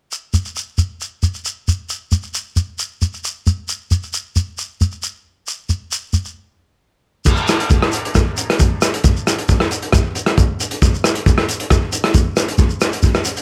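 A grainy, mellow shekere opens this short highlife cut from a longer piece, sounding close and dry at the front of the mix. For the first stretch it carries the danceable, sunny groove by itself in a straight 4/4 feel. A break arrives at 6.4 seconds, and at 7.3 seconds a crunchy breakbeat drum kit enters with kick, rim click, hi-hat and crash cymbal. The kit sounds saturated and gritty, with a punchy kick, dark cymbals and a rolled-off top, as if recorded in a small room, and it also sits up front. Both parts then drive the second section together to the end, with little reverb around them.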